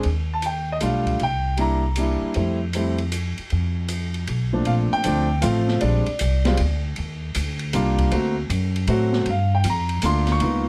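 Relaxed and swinging, this short excerpt from a longer jazz piano trio moves at 156 BPM in 3/4, with a swung eighth-note feel that settles from F major into Bb major at 4.7 seconds. A warm concert grand piano carries the melody, ranging from Bb2 up to Db6 with a deep bass register, open tone and long sustain, sitting up front in the mix. An upright bass plucks beneath it from 0.1 seconds, its steel strings giving a woody, warm, growly voice that also stands forward. An acoustic drum kit of hi-hat, kick, ride and snare plays further back, with dark cymbals, a medium-tuned snare and a boomy kick heard in a small room. The close, detailed recording carries little reverb, and the harmony drifts through rich colors such as Ebmaj9#11, Bb13 and Gm9.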